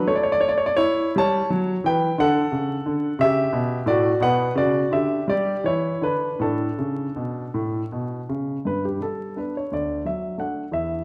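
An intimate, up-front grand piano with audible action noise plays alone through this radiant, flowing baroque-style classical suite movement in D major, moving in a rubato 6/8 at 52-60 BPM across a range from D2 to A5, its harmony passing from A7 through D, Bm, Em7 and Asus4 before a new section turns to G at 8.7 s and D at 9.7 s, all heard in a moderate recital hall reverb with a layer of vinyl crackle.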